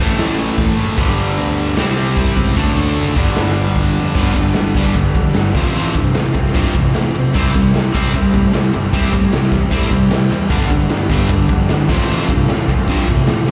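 This sounds like a live gig heard through the venue's PA, with recital-hall reverb and a dull ceiling where nothing rises above 10.5 kHz. It is a rowdy, upbeat punk rock cut from a longer piece, in C major at 151 BPM in a straight 4/4. The opening stretch runs in half time until 4.2 seconds, moving through Am, G, C and D before the second section settles on F/A, C and G. Three guitars play riffs throughout. A cranked stack guitar is overdriven with slapback echo, a compressed distorted electric guitar sits in the background, and a double-tracked raw garage guitar, also overdriven with slapback echo, reaches highest of the three. Beneath them a fuzz picked electric bass adds a growly, amped overdriven bottom. From 0.2 seconds, an up-front acoustic drum kit with a punchy kick, a medium-tuned snare, hi-hat and crash carries a smooth, rolled-off top and the dark character of a bright stone room.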